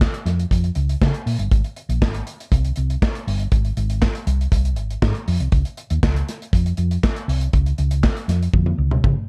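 A round, amped hollow-body electric bass sits up front in this joyful, danceable disco groove, its fingered short-scale tone dark and ranging from G1 to Db3. Beside it, an acoustic studio drum kit in a small room carries a straight feel with a tight kick, a medium-tuned snare, hi-hat, handclaps and toms. The kit sounds smooth and close, with a rolled-off top end. Both parts play together from the opening moment, and a drum fill arrives at 8.5 seconds to close the passage, which is cut from a longer piece. The production is warm and nearly dry, with little reverb.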